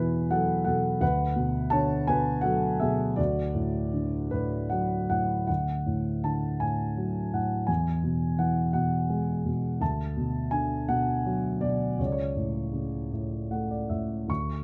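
Classical solo piano in 6/8 at a slow, rubato 50-57 BPM, this peaceful, tender excerpt in D lydian features a dark, mellow concert grand with deep bass, heard up front through close, detailed microphones in light reverb, moving through chords like Eadd9, Bmadd9/D and Dmaj9/C# as a phrase repeats, before a brief piano fill at 13.1 seconds.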